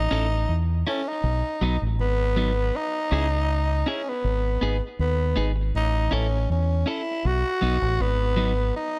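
A raspy, growling tenor saxophone solo with light vibrato and tape echo leads this meditative, serious roots reggae excerpt at 80 BPM over a round, punchy dub bass held up front, while a clean, picked electric guitar with a scooped tone and plate reverb accompanies the chord changes from A through B, C#m and G#m in a lightly reverberant room.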